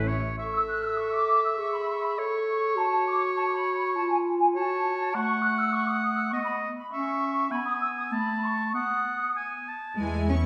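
A quick, lively and graceful classical-period movement for symphony orchestra in A major, cut from a longer piece, moves at 100 BPM in 2/4 with a rubato feel. A clear, up-front solo oboe and a dark, soft-attacked clarinet carry second lines over a brief touch of rich, bowed violas and double basses, and from 0.4 seconds a large, distant flute ensemble adds a pure, vibrato line with crisp attacks as the harmony passes through F sharp minor, B and C sharp minor. At 10.0 seconds focused violin and cello sections join the returning violas and basses for a short close, heard in a wet scoring-stage reverb.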